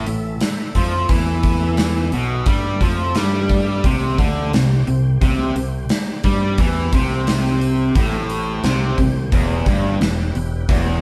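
A gritty, swaggering classic rock excerpt at 88 BPM opens with two bright, overdriven picked electric guitars playing a low riff over a growling fingered bass, while a full tonewheel organ holds sustained chords in the background through slow rotary speaker and chorus vibrato, and an up-front gated 80s drum kit with punchy kick, medium-tuned snare and hi-hat rings in an airy stone room, the band sounding live in one room as the chords move from A5 to C5 and then Em.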